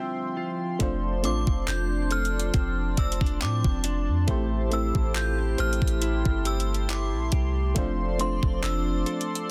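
A smooth, romantic contemporary R&B excerpt opens with a brief break of inharmonic synth chime melody treated with ensemble chorus, phaser and digital delay, warbling FM electric piano with tremolo, a shimmering pulse-width pad and picked, direct-recorded clean guitar arpeggios, before a round, deep 808-style bass and an overdriven, thumpy 12-bit drum machine with handclaps and hi-hat enter up front at 0.8 seconds in a dense, dry, heavily limited mix.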